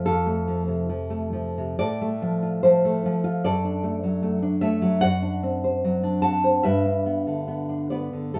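A solo nylon-string guitar opens this brief, nostalgic romantic classical piece, its dark, thumb-plucked tone sitting up front in a moderate studio reverb. Moving in a flexible, rubato 2/4 at roughly 63-78 BPM, the guitar spans from F2 up to A5 as the harmony drifts from F through F/A before settling into D major at 3.4 s. It then colors D/F# with a D7/F# and reaches G as this short cut from a longer piece ends at 8.4 s.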